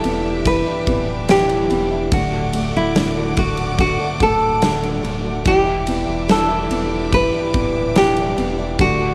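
A longing, melancholic pop ballad in E minor at 72 BPM, this short cut from a longer piece moves from Em7 to D and back to Em7. An up-front, full-bodied fingerpicked nylon-string guitar carries the melody over a soft, felt-muted upright piano with audible action noise, picked arpeggios on an old ladder-braced acoustic guitar, and lush bowed strings with vibrato holding sustained chords high above. Underneath, a deep, saturated sub bass with a fast attack plays alongside a huge arena drum kit of punchy kick, medium-tuned snare and bright ride cymbal, and the whole mix sits in light reverb with a small room ambience.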